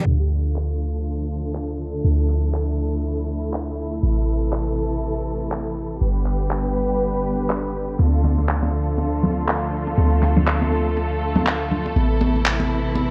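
A swung 16th-note groove at 121 BPM in 4/4 drives this hypnotic, earthy afro house excerpt in D dorian, with layered electronic handclaps entering at 0.6 seconds, their produced snap set up front with a small-room character. Underneath, a deep, boomy 808-style bass with a sine body, a noise layer and a fast, decaying attack holds the low end in a mellow register. A lush, woody string section, bowed close with ensemble vibrato, sustains chords that move from Dm to Am, G and back to Dm. At 8.0 seconds, congas join with bright, acoustic hard-hand tones from a small room, adding an earthy percussive lift. A filter sweep runs across the whole passage, and light reverb with studio ambience gives the mix a warm, intimate glow.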